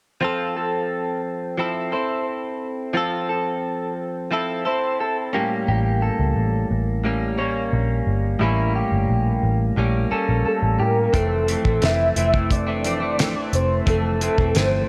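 A clean electric guitar, recorded direct with a scooped, compressed tone, carries the accompaniment from 0.2 seconds. Its analog chorus and warbly pitch drift give this sunny, laid-back bedroom-pop and indie-pop passage, at 88 BPM in F major, a hazy character. Above it, a second guitar through a small old amp plays a slightly broken-up picked line with subtle chorus and analog delay as the harmony moves from Fmaj7 to A7b9. A foam-muted picked bass, dark and round, joins at 5.7 seconds. Shortly before the chords return to Fmaj7, a mellow synth lead built from detuned triangle and sine layers with a sub octave, vibrato and ensemble chorus takes the melody, and at 11.1 seconds a damped 70s drum kit enters, dry and up front with a fat snare, tight kick and hi-hat. Light reverb sits over the mix, and the passage is cut from a longer piece.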